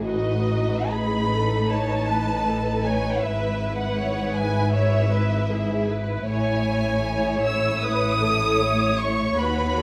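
With uneven, rubato beats in 4/4, this serene, lyrical passage from a romantic movement for string orchestra sets an up-front, warm violin section singing the melody with expressive vibrato and a soft attack over a focused second violin line, rich and even violas, a cello section and a clear double bass section, every part bowed, as the chords pass from B7/A to E/G# at 3.2 seconds and Amaj7 at 6.3 seconds in light reverb.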